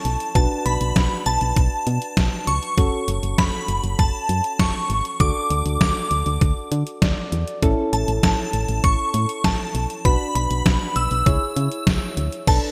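A bright 1980s-style digital production sits in a lush hall reverb, setting this short synth-pop excerpt in F# minor at 99 BPM in a straight 4/4 with a driving, melancholic mood. A shimmering, dreamy FM bell carries the melody high above the mix, its ensemble chorus giving it a halo as each note rings and decays. Beneath it, soft electric-piano-like synth keys with a mellow, rounded tone and gentle chorus play the accompaniment, stepping forward with a brief fill at 6.7 seconds. A punchy, dark FM bass sits up front, while a detuned 8-bit drum machine with a thumpy kick, medium-tuned snare, hi-hat and crash is the loudest part, its gated reverb adding to the retro sheen. The harmony moves through Bm, F#m, D and A before turning to Bm and C#m near the close.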